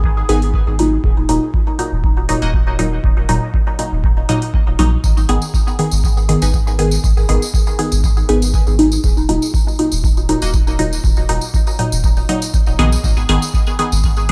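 Dub techno at 120 BPM in G# minor, cavernous and nocturnal, where a muted, detuned chord stab with phaser, tape grit and dub echo pumps up front over a round sub bass and a deep analog kick, a crisp wavetable stab glints in the background, metallic hats enter at 0.3 seconds and a jingly, close tambourine joins at 5.0 seconds, all floating in an echo-heavy mix as G#m and D#m alternate in this excerpt.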